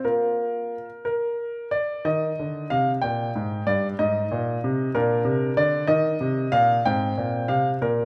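A bright, brilliant, intimate baby grand piano sits up front in a moderate recital hall reverb, its natural tone carrying audible action noise. This short cut from a classical-period sonatina in E-flat major moves in a flexible, rubato 6/8 at 62 BPM, elegant and serious in mood, with the solo piano ranging from G2 to G5 over 8.1 seconds. A new section begins at 2.0 seconds, passing through E-flat, A-flat and B-flat harmonies before settling on an A-flat add9 chord at 6.8 seconds.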